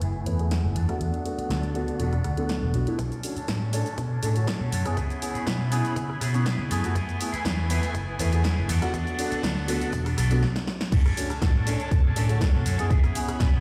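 This filtered disco house excerpt opens at 121 BPM in B dorian with a sensual, nostalgic mood. A lush, bowed string section holds sustained chords in the background with vibrato and portamento, while a bright, twangy electric guitar plays a clean picked riff through an envelope filter. Beneath them, a round, up-front fingered electric bass and a dry analog drum machine with a punchy snare, hi-hat, rim click, shaker and crash set the groove, with the drum machine's hats, cymbals and percussion pumping with sidechain, and a mellow grand piano, colored by phaser and 12-bit sampler grit, slips in as accompaniment. Strings, guitar, bass and piano all pump with sidechain and pass through a low-pass filter that sweeps through the opening and the build-up. The chords begin on F#m11 and E9sus4, and at 3.0 seconds a layered electronic kick arrives alongside a very quiet, close tambourine as the harmony moves to Bm9 and C#m7. 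A stop and drum fill at 10.4 seconds lead into the drop at 10.9 seconds, all heard as if played on a big sound system in a bare room with large studio reverb.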